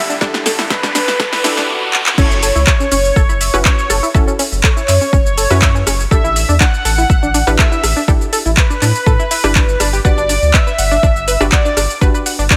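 Bittersweet and expansive, this progressive house excerpt at 122 BPM opens with a build-up in which a very quiet, lush supersaw pad holds sustained chords until 1.7 seconds while a background riser and swell and a drum fill lead into the drop at 2.2 seconds. From there a round, dark analog bass joins with sidechain pumping beneath an up-front, overdriven deep kick and a deep house kit of punchy snare, metallic hats, handclaps, rim click, shaker and crash. Over this, a thick, bold, wave-folded unison lead with vibrato, subtle chorus and tape echo carries the melody, while a tight, driving sequenced synth spins mellow arpeggios and a bright, detuned unison pluck adds stabs, both pumping and echoing across chords that move from A7sus4 to F#m7, back to A7sus4 and on to Gmaj7.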